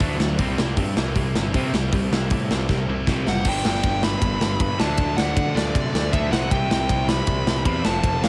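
Rebellious and upbeat, this punk rock excerpt charges ahead at 157 BPM in a straight 4/4. A stack of picked electric guitars drives the riff: one bright, distorted, double-tracked part drops out at 3.5 seconds, another distorted guitar sits very quiet and compressed, and a bright overdriven guitar sits in the background. Underneath, a growly fuzz bass with overdrive adds weight, while an acoustic big rock drum kit sits up front with a tight kick, a medium-tuned snare, hi-hat, ride and crash cymbals, and a rolled-off top. A drum fill leads into the second section at 3.5 seconds, just after a dark, smooth overdriven lead guitar enters high up at 3.3 seconds to carry the melody. The chords move from C to G to D and back to C, and the dry sound keeps everything close.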